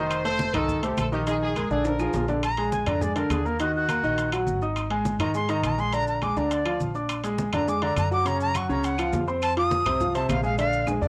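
Fiery, driving salsa at 206 BPM, cut from a longer piece, where a warm horn section states the melody until 2.3 seconds before a breathy, reedy jazz flute takes a solo from 2.4 seconds over a clear, up-front concert grand piano with cassette tape and plate reverb, a woody, thumpy pizzicato upright bass, ringing saturated timbales, background congas, claves and grainy maracas, with drum fills at 1.9 and 10.9 seconds and chords moving from F7 through Ebm and Bb7 to F5, all in a home cassette recording.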